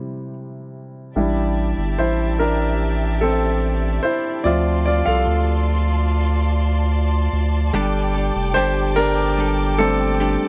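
In a straight 4/4 at 73 BPM, this emotional, longing pop ballad opens with a clear, polished baby grand piano playing alone until a deep, saturated sub bass and a rich, smooth string section with vibrato enter at 1.2 s over chords moving from A7sus4 to Dm7, before a clean, picked, compressed electric guitar adds background arpeggios from 7.7 s, all captured in a dry, close 1970s-style studio sound.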